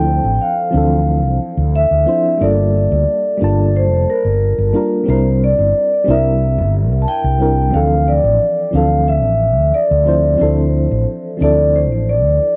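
A straight 4/4 pulse at 90 BPM sets an unhurried sunset chillout groove in D minor, wistful and gently warm in mood. The fretless electric bass sits up front with an amped tone, holding the low end between F1 and D2 until 12.4 seconds. Above it, a vibraphone played with medium mallets and the motor off carries the melody, its metallic, ringing notes sounding boxy and close, colored by cassette tape grain, plate reverb and tape echo. A mellow FM electric piano supplies soft, round, dark accompaniment with a vintage, warbling character from chorus and tremolo, its fast-attack notes decaying into plate reverb and tape echo over a faint noise layer. The harmony cycles through Dm9, Gm7 and C7 before returning to Dm9 at 7.7 seconds as the opening phrase repeats. The home cassette recording in a modest booth gives this short cut from a longer piece an intimate, lo-fi closeness.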